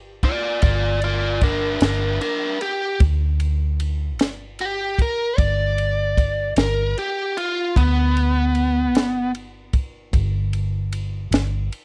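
Slow blues in a swaggering, laid-back 12/8 with a straight feel, cut from a longer piece. A compact cocktail drum kit sits up front with a punchy kick, a high-tuned snare and dark ride cymbal, its sound acoustic and dry. Underneath, a vintage fingered electric bass gives a round, foam-muted low end, amped and dark, holding to a low register throughout. A biting lead guitar, bright and picked through overdrive, takes the melody as a solo from 0.2 to 9.3 seconds, ranging up to the high D. The whole passage rests on a G5 chord, with light reverb around the trio.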